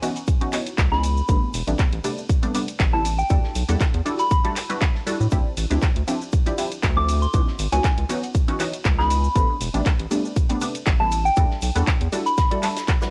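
Moody and smooth, this deep house excerpt from a longer piece sets muted, detuned dub chord stabs, colored by phaser, chorus, analog delay and sidechain pumping, over a punchy, up-front electronic kick, a round, dark analog bass that pumps beneath them, a house kit of claps, ride, shaker and bright hats, and a very quiet, cloth-damped acoustic kit with a fat snare, while a soft, pure FM bell melody floats above through chorus, phaser and echo, all with the light reverb and hazy grain of a home cassette recording.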